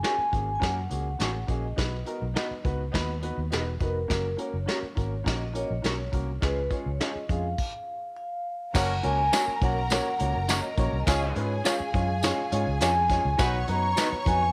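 Danceable and uplifting, this uptempo 1960s-style soul excerpt sets a mellow, ringing vibraphone melody over woody upright piano, slightly broken-up guitar stabs in the background, punchy brushed drums and a round, foam-muted bass in a small room, pausing briefly from 7.6 to 8.7 seconds before a lush bowed violin section, jingly tambourine and a distant horn section with slapback echo join at about 8.7 seconds.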